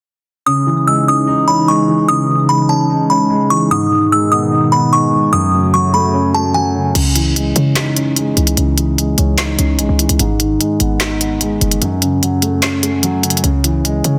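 Brooding, hard-hitting trap in C# minor at 148 BPM with a half-time feel: this cut opens with a delicate, tinkling FM tine bell melody carrying chorus and tape echo over a dark, boxy, low-passed grand piano, while a hollow, flute-like pad holds soft chords in the background. At 7.0 seconds the bell and pad drop away as a punchy, tight 808-style bass and an up-front trap kit of woody snare, crisp hi-hats, handclaps and crash cymbal arrive; a filter sweep runs across the piano, and the kick falls out at 11.8 seconds. The chords circle C#madd9, G#m and F#m before settling on C#m, set in a dense, heavily limited master with a moderate scoring-stage reverb.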